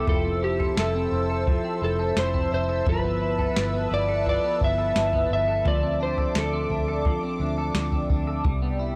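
A slightly broken-up electric slide guitar sings the melody through analog delay over a swirling, detuned sawtooth pad, twangy chorused arpeggios from a clean electric guitar and a round, foam-muted bass, joined at 0.1 seconds by a soft analog rhythm box with a deep kick, crisp snare and toms, in an ethereal, floating dream pop excerpt that moves from Fmaj7 through G13 and Dm7 to Cmaj7 with light reverb and a gritty cassette-tape character, the slide guitar stopping at 7.7 seconds.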